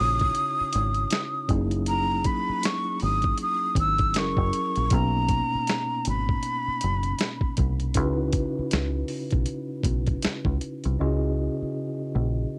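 R&B and neo-soul at a relaxed 79 BPM with a swung sixteenth feel, this late-night, soulful excerpt sits in C# dorian and moves through chords such as C#madd9, F#13 and Bmaj7, captured as a dry home cassette recording. A breathy, hollow jazz flute carries the melody up front with vibrato and a soft attack, its tone coloured by tape, and falls silent at 7.5 seconds while a mellow tine electric piano plays accompaniment through built-in speakers until 12.6 seconds. Underneath, a deep, round, foam-muted fingered electric bass and a gritty, compressed sampler-style drum kit with a thumpy kick, medium-tuned snare and hi-hat sit prominently in the mix.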